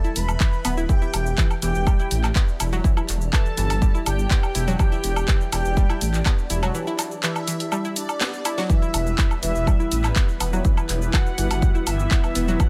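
Driving and cinematic, this melodic techno excerpt at 123 BPM centres on a punchy, up-front electronic kick and a deep, rumbling detuned saw bass, with a tape-warm house drum kit adding a cracking snare, handclaps, hi-hat, shaker and woodblock; the bass and the kit's hats and percussion pump under the sidechain. Above them, a round analog pluck spins chorused arpeggios, a smooth expressive synth lead with vibrato sings the melody in the background, and an airy soft supersaw traces a second line in a higher register, both trailing tape echo. A blurred, evolving granular cloud pad hangs behind everything, a break arrives at 6.7 seconds with a drum fill leading out, and a lush, warbling unison pad enters with sustained chords at 8.7 seconds.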